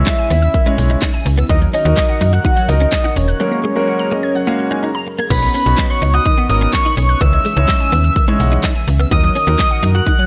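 A snappy, slap-like FM bass with a metallic attack sits up front in this euphoric, summery dance-pop excerpt, driven by a punchy pop drum kit whose fat snare, handclaps, hi-hat, shaker and crash cymbal carry a straight feel. Over it, a soft, round octave-layered synth lead carries the melody with chorus, vibrato and tape echo, while a clear concert grand piano with audible action noise supplies accompaniment and fills between 3.9 and 5.3 seconds, during a break, and again from 8.2 seconds. In the background, a shimmering, retro pulse-width pad holds sustained chords, and a glassy, crystalline wavetable pluck traces arpeggios through chorus and tape echo. A clean, direct-recorded electric guitar picks a compressed riff beneath the mix, and a hollow group handclap is barely audible. The bass, piano, pad and pluck all pump with sidechain compression, and the whole is set in a digital ambience over a progression that moves from C#madd9 through D#m and F#add9 to Badd9.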